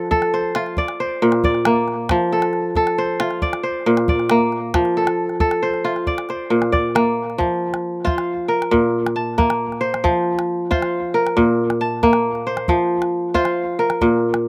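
Set in 12/8 at 90 beats per minute, counted in dotted quarters with a straight feel, this short cut from a longer piece of West African traditional string and xylophone music has a flowing, hypnotic mood in F major. The kora sits up front, its fingerpicked arpeggios ringing and crisp across a range from Bb2 to A5, with a slapback echo trailing each phrase. A small calabash keeps the percussion close and dry beneath it, playing from 0.1 to 14.4 seconds. The first half rocks between F and Bb chords, and from 7.4 seconds the harmony opens out into bare F5 and Bbsus2 shapes. Recorded outdoors with little reverb, the sound feels immediate and intimate.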